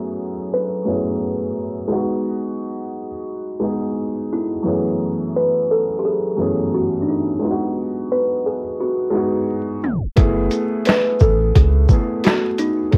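A soft, mellow felt-muted upright piano opens this reflective, nostalgic lo-fi hip hop excerpt at 87 BPM in F# dorian, with a woody, ringing kalimba melody joining at 0.5 seconds over gently swung F#m11 and G#m7 chords, cassette tape colour, vinyl crackle and a filter sweep. A tape stop at 9.8 seconds then gives way at 10.2 seconds to a thick, saturated sub bass and a gritty, pitched-down boom bap kit with a thumpy kick, snare, hi-hat, shaker and finger snaps, all set in a small, homespun room.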